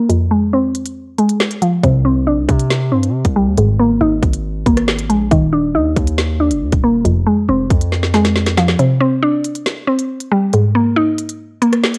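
Dark and tense, this half-time drill excerpt in C minor at 138 BPM opens on a woody, detuned mallet-like synth pluck under a filter sweep and cassette-tape haze, joined at 0.1 seconds by an overdriven drill kit with a hard-clipped kick, crisp hats and rim clicks, while a distorted, heavy 808-style bass arrives at 1.8 seconds and drops out at 8.8 seconds after a drum fill, leaving the kick muted as the chords cycle from Fm through Csus2, Absus2 and Eb5 in a digital ambience.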